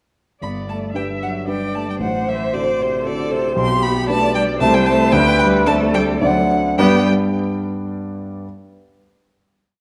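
In an unevenly pulsed triple metre, this spirited, cheerful classical-period movement for piano quartet sets a rich, focused violin melody with vibrato up front, over a clear, even cello doubling the tune at the octave and an expressive viola adding a counter-melody with portamento and sustained chords, both heard at a distance, while the warm grand piano supplies octave bass with chords and sounds alone from 7.1 s until 8.5 s on the closing chord, the whole piece steeped in a recital-hall reverb and the warbling pitch drift of worn old cassette tape.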